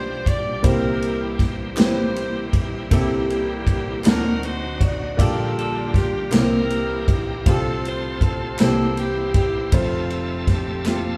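Recorded as a band playing live in one room with a moderate reverb, this short cut of slow gospel at 53 BPM in 6/8 feels jubilant and soulful. A warm, smooth saxophone section sings the melody with jazz vibrato over a clear, up-front concert grand piano with deep bass, while a bright, shouting tonewheel organ holds full chords with key click, light overdrive and a slow rotary speaker. A punchy, natural big-band drum kit of kick, ride and snare comes in at 0.3 s, crisp handclaps join quietly in the background at 1.8 s, and a drum fill arrives at 10.9 s as the harmony settles on Fmaj7.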